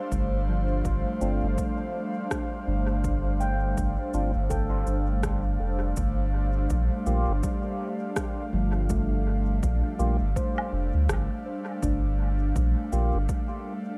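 The recording sits in a hazy, echo-heavy digital ambience, a short cut from a longer ambient dub piece with a meditative, gently swung feel. An airy, breathy pad holds soft, detuned sustained chords through the chorus effect, while a ringing handpan plays dark, smooth arpeggios through tape echo, its tone shaped by a filter sweep over the first 6 seconds. Up front, a deep, round sub bass anchors the low end, and a punchy, layered electronic kick sits further back in studio reverb beside an electronic cabasa, rim click and woodblock trailing dub echo. From 1.2 seconds a fat, clean tonewheel organ adds stabs through a slow rotary speaker and dub echo. The harmony rests on Dm7/G before shifting to Gm7 at 6.0 seconds.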